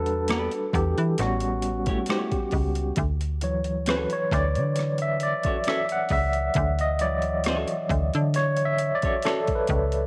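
The overdriven tine electric piano takes the lead here, its barky, amp-driven tone carrying a fast tremolo and sitting up front as it solos across the whole 10.1 seconds. This is a relaxed, sensual slice of neo-soul R&B at 67 BPM in D major, with a lightly swung sixteenth-note feel, cut from a longer piece. Underneath, a slap-like FM bass adds a snappy, metallic attack and a digital edge, its notes decaying and thickened by transformer saturation. A pitched-down, sampler-style boom bap kit of hi-hat, rim click and a thumpy kick comes in at 0.1 seconds, compressed and overdriven for a gritty texture. A clean, twangy electric guitar plays a picked second line with tremolo from 0.3 to 9.4 seconds, sitting lower in the mix. The harmony moves from Em7 to A7 and settles on Dmaj7, all wrapped in a light reverb.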